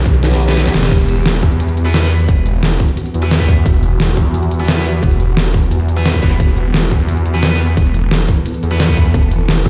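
A phased, detuned saw bass dominates this dark, aggressive drum and bass, its thick, swirling sawtooth tone saturated and pushed up front, pumping against the kick. Behind it, a swarming drone holds sustained chords deep in the background, tense and evolving, with its own reverb and the same pumping motion. The drums arrive almost at once: a tight, layered electronic kick and an overdriven kit with a deep snare, metallic hats, rim clicks and crash cymbal, all sounding re-recorded in a small room. A short drum fill opens the cut, and during it a compressed, chorused formant-sweep wobble bass flashes briefly between 0.2 and 0.7 seconds. Bright, high-gain distorted guitar stabs, double-tracked and picked with a touch of delay, join at 0.5 seconds and sit low in the mix as the drop hits at 0.9 seconds. The whole piece carries the weight of a big sound system in a bare room, finished with a large studio reverb, and it is cut from a longer track.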